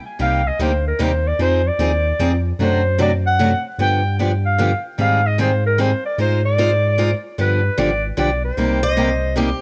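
A swung waltz feel in three drives this fiery, virtuosic snippet of acoustic string swing in the jazz manouche style, cut from a longer piece. A clear, punchy clarinet carries the solo melody with vibrato and scooped notes, sounding roomy and a touch distant yet up front, its tone colored by cassette tape and an analog delay. Beneath it, a bright, boxy parlour-style steel-string guitar picks the accompaniment on fresh strings, also through cassette tape, while a deep, full sub bass with an added octave sits sustained and prominent with a fast attack. The harmony moves from Cm7 through Fm7, D7/F# and G7 to Abmaj7 before resolving back to Cm7. Near the close, at 8.8 seconds, a second picked guitar line slips in just before the clarinet finishes at 9.6 seconds, all set in a moderate small room with a homemade cassette character.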